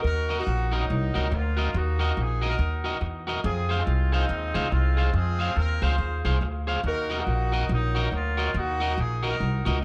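Mischievous and driving, this brief ska fragment at 141 BPM swings its eighths in Eb dorian over an Ebm to Fm and back to Ebm progression, with a loose, roomy horn section carrying the melody, a woody, thumpy pizzicato upright bass on gut strings sitting up front, and a twangy, slightly broken-up picked electric guitar with slapback echo joining at 0.3 s, all set in a light small-room reverb.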